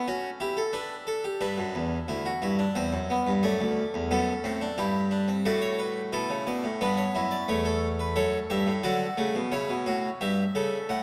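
Classical baroque-style four-part fugue for solo harpsichord in 3/4, cut from a longer piece, stately and joyful, the plucked, full-bodied Flemish-style instrument with two sets of strings sitting up front across a range from D2 to F#5 while a long concert-hall reverb of 2.4 seconds blooms around it, its harmony moving through dominant-seventh and inverted chords before turning to a half-diminished colour at 9.5 seconds.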